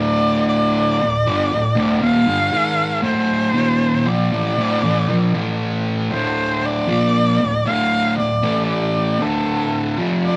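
A slow, straight 4/4 pulse at 58 BPM drives this sludgy, ominous metal passage in D minor, tuned to A4 = 445 Hz and cut from a longer piece. Up front, a double-tracked electric guitar plays a picked riff between D2 and Bb3 through fuzz distortion, moving from a D5 power chord to a full Dm at 6.1 seconds. Above it, a single bowed erhu carries the melody from A4 to F5 with a warm, smooth top, expressive vibrato and gliding portamento. Both instruments play throughout, with the guitar sitting louder than the erhu. The band plays live together in one room, wrapped in a moderate large-studio reverb of about 1.0 s that gives the heavy sound some air.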